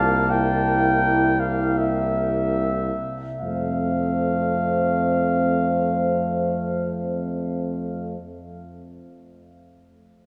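Heard from far back in a cathedral with a long, wet reverb of about 5.2 seconds, this tender, hymn-like brass band passage in F major unfolds in free time and slows through its opening 3.4 seconds as the harmony moves from C7 to F. A mellow flugelhorn carries the melody up front over a punchy, warm tuba bass, while a dark, distant French horn section sings a second line in the background. A smooth-topped trombone and a very quiet, roomy euphonium, which enters at 0.3 seconds, fill in the accompaniment of this excerpt cut from a longer piece.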